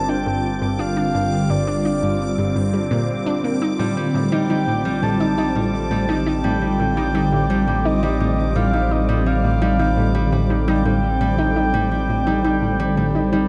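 Cosmic and expansive, this excerpt of ambient, sequencer-driven space music moves at 85 BPM in a straight 4/4, shifting from Gm7 to Am7b5 at 3.6 seconds. A swirling, phased analog pad holds slow-attack chords while a detuned, warbling analog pluck repeats a riff through tape echo, a deep, round bass fades in beneath, and a breathy, flute-like synth lead carries the melody with vibrato alongside a bright, bubbling stepped-filter texture. From 3.8 seconds a ringing concert harp adds fingerpicked arpeggios, and the whole piece sits in a vast, echoing cathedral reverb with the dulled top end of cassette tape.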